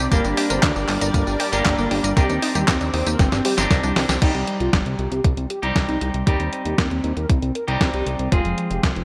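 A straight 4/4 italo disco groove at 117 BPM in C minor, driven by an overdriven, thumpy electronic kick and an up-front 12-bit drum machine with a fat snare, handclaps, hi-hat, tambourine and crash under gated reverb, sets a bittersweet yet danceable mood. A round, full-bodied synth brass carries the melody with chorus, vibrato and digital delay, while a thick, detuned sawtooth analog bass and bright, picked stabs from a clean electric guitar run throughout. A lush unison pad with phaser and a very quiet, ring-modulated pluck arpeggio fill the opening until a drum fill from 3.2 seconds and a band accent lead into the second section at 4.2 seconds, all set in light digital ambience.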